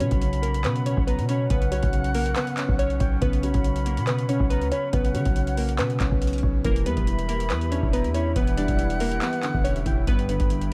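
Eerie and hard-hitting, this half-time hip hop and trap excerpt at 140 BPM in B harmonic minor sets glassy, warbling digital keys carrying the melody over an airy, vibrato-laden silver flute second line with delay, a dark, mellow grand piano accompaniment, a breathy flute ensemble holding chords in the background, a punchy, sine-based 808 bass, and a booming, dry analog drum machine with deep kick, metallic hi-hats and handclaps up front, moving from Bsus2 to Em7 at 6.6 seconds inside a studio reverb.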